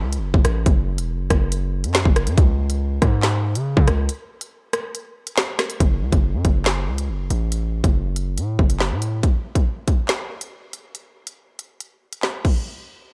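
A distorted, saturated 808-style bass with a noise layer drives this cold, dark drill cut at 140 BPM in a half-time feel in F# minor, sitting up front until 9.2 seconds beside an electronic drum kit of hard-clipped kick, woody snare, crisp hats, handclaps, rim clicks and crash cymbal re-recorded in a large room, with a break at 4.1 seconds and the kick dropping out at 11.8 seconds in this dry mix.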